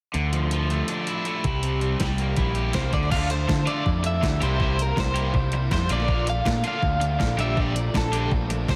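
This short excerpt of indie rock opens with an overdriven semi-hollow guitar picking a bright riff over a growling bass that sits up front and a crisp 8-bit drum machine with a thumpy kick and overdriven crunch. The mood is cool and bittersweet, moving at a brisk straight pulse as the chords shift from Dmadd9 to C7 before a brief break. At 2.7 seconds an electric guitar at the edge of break-up enters with a high melody, its tone slightly broken-up and colored by tremolo and a diffuse ambient delay. From 3.1 seconds a compressed fuzz guitar with ensemble chorus joins in the background, thickening the riff as the harmony moves through Bbmaj7 and Gmadd9/Bb. A lush hall reverb soaks the whole mix, giving it a dreamy, hazy sheen.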